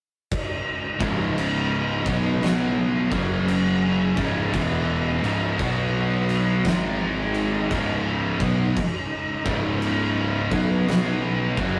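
A rough rehearsal-room recording with tube saturation and moderate studio ambience frames this brooding, ominous stretch of stoner and doom metal, cut from a longer piece and crawling at 57 BPM in 4/4 with a swung eighth-note feel in C# minor. An oversized, low-tuned acoustic drum kit sits up front, its boomy kick, fat snare and dark crash cymbal gritty and saturated in a big, pumping room. From 1.0 seconds, three guitars lay down the riff together: a bright, double-tracked high-gain guitar, a dark, thick fuzz guitar in the background, and a very quiet, warm fuzz guitar. A growly fuzz bass, overdriven and recorded both direct and amped, carries the low end beneath them. Very quiet, shimmering vintage string-machine violins hold sustained sawtooth chords with a slow attack and ensemble chorus from 0.3 seconds. The harmony moves from C#5 through F#5, C#m, B5 and G#5 before returning to C#5 at 7.7 seconds.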